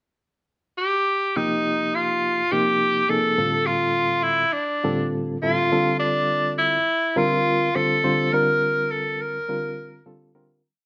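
Soaring, slick jazz in Bb major at 104 BPM with a straight 4/4 feel. A clear tenor saxophone enters at 0.8 s over the pickup bar, carrying a motif-based melody in song-like phrases with vibrato and scooped notes, set up front with slapback echo and plate reverb. From 1.4 s a barky, reedy electric piano joins with lightly overdriven, fast-tremolo syncopated chord stabs in quartal voicings through Abmaj9, F69/A and Bbmaj7, all in a small room, before the piece fades out from 8.3 s.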